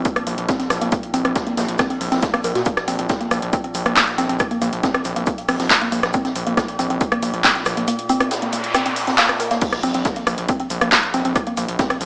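Driving peak-time techno in straight 4/4 at 138 BPM, this dark, intense excerpt runs on a punchy, layered electronic kick set up front with studio reverb, joined by a techno kit of metallic hats, handclaps, rim clicks and crash cymbal, while a swinging big-band drum kit of hi-hat, shaker and medium-tuned snare sits in the background with a natural big-room character, high-pass filtering and sidechain pumping. A gritty, saturated synth bass built from square, sawtooth, sync and sine tones holds down Bb1 to Bb2 with resonant filter sweeps and sidechain pumping. Above it, a woody, wave-folded pluck with a sub octave and noise layer plays a short-decay riff between Bb3 and Bb4, treated with chorus, tape echo and pumping. An eerie, metallic FM drone on Bb2 hovers in the background with ring modulation, chorus and its own reverb, colouring the single Bbsus2 harmony. A noise sweep runs from 8.2 seconds into a sub drop and impact at 9.6 seconds, launching the drop through to the end, all set in a moderate stone room with small-room ambience and a small-speaker sound.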